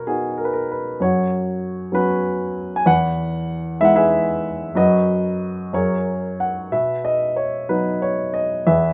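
Classical solo piano in a gently paced 6/8 with uneven, rubato beats, this calm 8.9-second passage cut from a longer piece sets a grand piano up front with a polished, present tone and short sustain in a modest small-room reverb as the harmony moves from B through F#sus4, E and F#add9 before returning to B.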